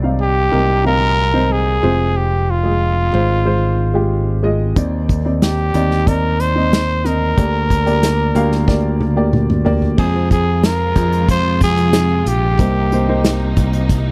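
A dry, close recording in a 1970s studio style carries this driving, earnest piano-driven pop cut from a longer piece, built on a woody, short-sustained upright piano and a bright, picked electric bass sitting up front. A raspy, growling trumpet takes the melody with scooped notes, light vibrato and tape echo, while an acoustic drum kit played with bundle sticks enters at 4.8 seconds with a punchy kick and a drum fill at 8.7 seconds. At 10.0 seconds a lush, bowed string section joins in the distance with sustained chords.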